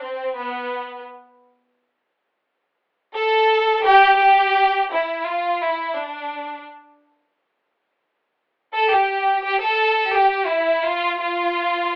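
Mexican folk in a festive, proud mood, this short cut from a longer piece features a chamber violin section playing alone from 0.0 to 12.0 seconds, its bowed, vibrato-rich ensemble tone focused and smooth on top and sitting up front in a wet studio reverb, all heard through a telephone-like sound.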